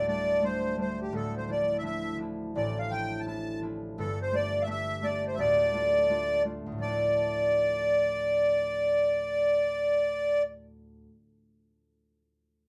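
Driving and spirited, this Celtic folk hornpipe moves in 4/4 with a 62% swing on the eighth notes, cut from a longer piece. An up-front accordion carries the melody in a reedy, sweet voice, its light tremolo tuning giving the tone an airy shimmer. Beneath it, a concert harp provides fingerpicked accompaniment that spans from deep bass notes up into the middle register, its acoustic strings ringing under the tune. The harmony circles between suspended and minor colors, opening on Gsus2 and settling onto Dm by 5.4 seconds. The accordion stops at 10.4 seconds, leaving the harp to sound on its own until 11.2 seconds, all within a moderate studio ambience.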